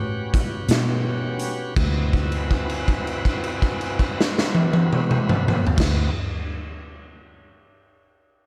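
A raw, gritty garage drum kit sits up front in this swaggering, soulful slow blues excerpt, its punchy kick, medium-tuned snare, crash, hi-hat and toms captured in a bright stone room, the whole kit entering at 0.3 seconds. Beneath it, a dark, foam-muted fingered electric bass plays a round low part, while a shouting tonewheel organ sustains full chords through a slow rotary speaker, light overdrive and plate reverb. At 54 BPM in 12/8 and D mixolydian, the music slows over its opening A13 before moving to D13 at 1.8 seconds, where a held note lasts until 5.8 seconds.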